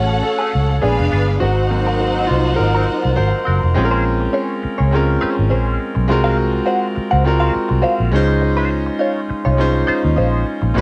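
At 103 BPM in 4/4, this smooth, lush soul fragment in D-flat major rides a light swing on the sixteenths, cut from a longer piece and tuned slightly flat of standard pitch. A clear concert grand piano carries the accompaniment up front with a polished, present tone and long sustain, taking a solo through the opening until 3.8 seconds, while a distant string section adds a bowed, expressive second line with vibrato and portamento before falling away at 3.7 seconds. A vintage muted electric bass holds the low end with a dark, round, foam-muted sound, and a direct-recorded clean guitar plays a bright, twangy, compressed riff through a wah. The harmony moves through rich extended chords, from Gbmadd9 and Bb7b9 into a second section beginning on Bbm9 and settling on Dbmaj9 at 8.1 seconds. The strings, piano and guitar carry a cassette-tape coloring, and the whole piece sits in a moderate studio reverb with the character of a home cassette recording.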